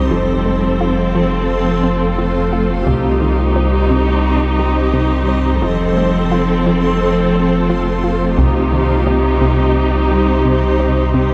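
Brooding and relentless, this cinematic excerpt of hybrid orchestral and electronic film score sets an expressive viola section with vibrato and portamento up front, over a lush, smooth cello section in the background, a deep, clean sine sub bass, a cloudy, evolving granular pad and very quiet, bright, detuned analog pluck arpeggios, while a very quiet, compressed and saturated taiko ensemble with hard sticks strikes in at 2.9 and 8.4 seconds, heard from further back on a moderately reverberant scoring stage.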